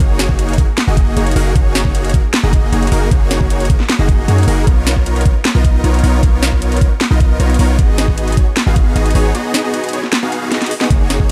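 Lush, detuned supersaw chords carry this euphoric, playful future bass excerpt, their bright sawtooth stack pumping against the sidechain under subtle chorus and tape echo, while a deep, boomy 808-style bass with a sine body and noise layer rides the same pump beneath. A knocking electronic kick and a trap kit of sharp snare and metallic hats drive the half-time groove through a dark, digital ambience. A break arrives at 9.3 seconds, and a drum fill follows at 10.5 seconds.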